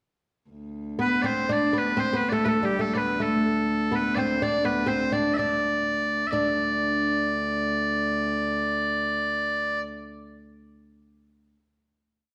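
Medieval dance in 3/4, driving and mysterious and speeding up from 121 to 135 BPM, where loud, piercing bagpipes carry an ornamented modal melody up front, a woody, plectrum-plucked oud plays the same line with its own ornaments, and a bowed viola da gamba holds a reedy, ringing drone on D2 from 0.5 seconds, set in a dark production with wet reverb before the piece settles on a final note at 6.3 seconds.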